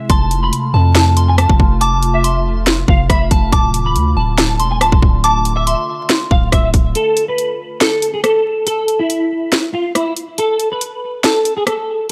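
Brooding and dark, this half-time trap excerpt pairs a clean, fingered hollow-body electric guitar melody with a soft, warbling FM bell line over glassy, ethereal pad chords, a deep sine 808 bass and an overdriven trap kit of hard-clipped kick, sharp snare, bright hats and rim clicks, all under a light digital ambience and vinyl crackle, until the bell drops away at 6.5 seconds and the pad and bass follow just before 7.0 seconds, opening a break in which only the guitar and drums carry on to 12.1 seconds.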